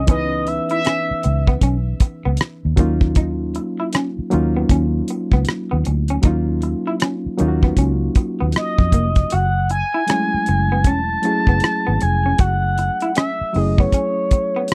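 A smooth, sawtooth synth lead with chorus and vibrato sounds from the very start of this sultry, late-night neo-soul R&B excerpt at 78 BPM with a swung sixteenth-note feel, alongside a barky, lightly overdriven reed electric piano, a dark, slightly broken-up electric guitar through a small old amp, and a round, punchy foam-muted fingered bass over a tight, damped 70s drum kit playing hi-hat, kick and rim click. The lead drops out at 1.4 seconds and returns up front at 8.6 seconds, while the harmony moves through C#m9, D#m9 and F#m9, and the kick falls silent briefly from 9.3 seconds. The sound is dry and close, in the manner of a 1970s studio.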